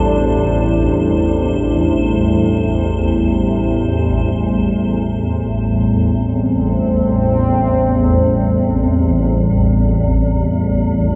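A vast, echoing cathedral reverb hangs over this desolate dark ambient drone, an 11.2-second fragment cut from a longer piece that drifts in free time in A minor, resting on an Am7 chord. Up front, a swarming, granular drone of detuned sine tones churns low in the register, tense and slowly evolving. Beside it, a sweeping, resonant pad built from sawtooth, triangle and sine layers with a sub octave holds sustained chords, its filter swell and chorus lending it a bright, shifting sheen. Higher up, an icy, crystalline glass pad with an airy noise layer adds a faint texture before fading at 4.4 seconds. A very quiet bronze singing bowl, struck with a felt mallet, rings out meditative metallic arpeggios with slow beating and a boxy small-room tone until 4.9 seconds, leaving the drone and resonant pad to fill the cavernous space alone.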